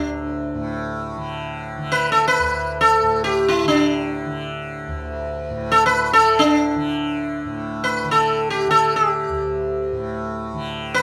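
Devotional and radiant, this Hindustani classical excerpt unfolds in free time as an up-front, plectrum-plucked sitar with buzzing sympathetic strings and a round, shimmering tone spins a melody through a plate reverb, set closely and in detail in a moderate studio room over a softly plucked tanpura whose bright drone hums far beneath it.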